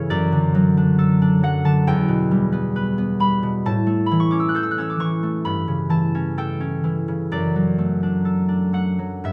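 Unhurried and rubato in 4/4 at around 61-70 BPM, this graceful, peaceful classical excerpt in D major features a solo concert harp, fingerpicked and up front with a ringing, warm acoustic tone spanning E2 to G6, moving through D/F#, Em, A and A7/G before returning to D/F# at 7.3 seconds, all set in light reverb and cut from a longer piece.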